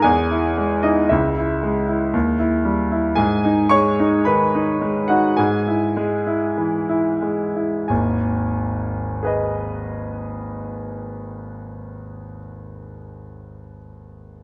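A clear concert grand piano carries this passionate, stormy passage alone, sitting up front with a deep bass that reaches down to G#1 and a treble that climbs to C#6. It is a classical virtuoso piano study in G# minor and 4/4, played with a rubato feel at a tempo that moves between 86 and 118 BPM, tuned slightly low at A4 = 438 Hz. The opening section moves from E through C# minor and D# before settling on G# minor, with the pace slowing from 2.1 to 7.9 seconds. A second section begins at 7.9 seconds on G# minor, following an E/G# chord in the slowdown. A moderate scoring stage reverb gives the piano an open sense of space. Cut from a longer piece, the passage ends at 14.4 seconds.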